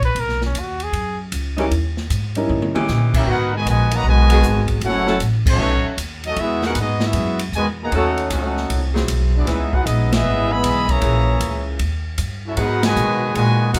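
A breathy solo trumpet with scooped notes and vibrato opens this sultry, dramatic big band swing excerpt in G# minor at 154 BPM, over woody pizzicato upright bass and a polished, airy drum kit with a punchy kick, before an intimate baby grand piano with audible action noise adds brief accompaniment and a smooth-topped saxophone section begins sustained chords at 1.6 seconds, then from 3.1 seconds a trombone section carries a second line beneath a clear trumpet section melody, punctuated by band accents in a moderate club reverb.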